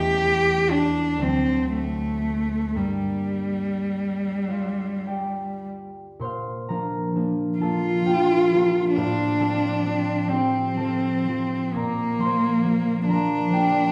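The recording sits in a stone room with a wet reverb, heard from further back in the space, though both instruments still come across up front. This is a romantic classical duo for cello and harp in 6/8 with a free, rubato feel, and its mood is yearning and elegiac. The single bowed cello carries the melody in a focused, close tone with rich vibrato, staying within a modest range from G3 to G4. Beneath it, the concert harp plays a mellow, thumb-plucked accompaniment that rings across a far broader span, from D2 up to D6, sitting a little lower in the mix. After an opening section, the music moves into a new section at 6.2 s, and both parts continue together until the fragment, cut from a longer piece, ends at 13.9 s.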